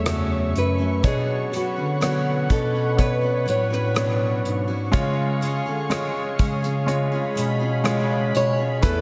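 Soaked in a moderate hall reverb with a softened top end, this dreamy fragment of a heartbroken, melancholic pop ballad carries a bright, fingerpicked nylon-string guitar melody through analog delay, over an intimate concert grand piano with audible action noise and a thick, warbling sawtooth pad treated with chorus. A full-bodied steel-string dreadnought picks arpeggios beneath, while an up-front bass clarinet holds the bass line with mellow vibrato in a jazz style. An acoustic drum kit played with bundle sticks joins at 0.1 s, bringing a tight kick, hi-hat and rim click.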